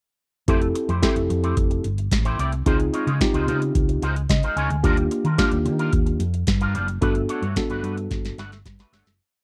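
A dry, close recording in an old studio style carries a smooth, feel-good early-eighties boogie funk piece, where a booming analog drum machine with a deep kick, crisp snare and metallic hats drives a four-on-the-floor beat, a dark, round hollow-body bass plays a fat syncopated line with slides and chromatic approach notes, a worn, slightly out-of-tune tine electric piano pushes rootless chords up front and adds a short fill at 4.0 seconds, and a bright, twangy guitar with an envelope filter and ensemble chorus chops out sixteenth notes, all sliding through major-nine chords before a fade-out from 7.0 seconds and a closing drum fill.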